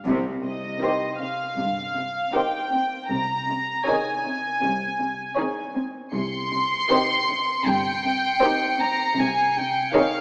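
Heard through a small speaker and bathed in wet concert-hall reverb, this short cut from an eerie, tense suspense film score moves at 79 BPM in C phrygian, alternating between Cm and Dbsus2/C. Bowed sul tasto strings carry it: an up-front, floating violin section holds the melody over a dark second violin line and rich violas, while a lush cello section plays a riff above a smooth-topped chamber cello bass and a soft-attacked double bass section in the background. A ringing, thumb-plucked concert harp adds texture only until 3.1 s, and from 6.1 s a high, intimate violin section enters at the very top.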